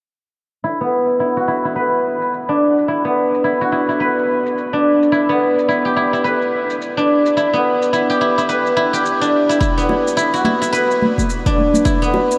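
Organic downtempo with a warm, hypnotic mood and a swung 16th-note feel, this excerpt centres on an up-front guzheng played with fingerpicks, its ringing, silvery arpeggios moving from Bm to Em7 through a low-pass filter sweep and analog delay. A produced, overdriven shaker sits in the background from the start under its own filter sweep, and a punchy, layered electronic kick enters at 9.6 s before bright, soft-handed bongos and congas join in the background at 9.9 s. The dreamy mix is soaked in a huge ambient reverb.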